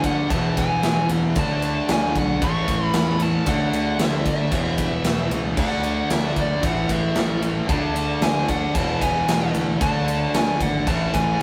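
Powerful and swaggering, this short hard rock excerpt drives along at 114 BPM in a straight 4/4, cycling through E, D and A chords. A dark, smooth lead guitar with overdrive carries the melody high above, while two overdriven rhythm guitars play riffs beneath it: one crunchy and warm, sitting in the background, the other bright and up front. A growling picked electric bass, overdriven and amped, holds the low end from the background. A big acoustic rock drum kit, close and prominent, pushes everything with a punchy kick, a medium-tuned snare and bright crash and ride cymbals ringing in a big room. The rough rehearsal-room sound, touched with moderate studio reverb, gives the passage a raw, live-in-the-room energy.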